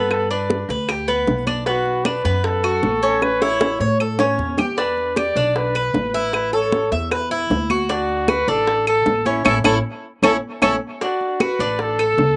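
A mellow, up-front trumpet sings a smooth, vibrato-laced solo melody over a bright, metallic Cuban tres picking arpeggios with a slapback echo and a dark, thumpy pizzicato upright bass, as tight, high-tuned bongos, woody claves and thin-skinned congas set in the background join at 0.1 s in this relaxed, dry, outdoor-sounding excerpt of Cuban son and guajira, marked by a drum fill at 3.2 s and a full-band accent at 9.5 s.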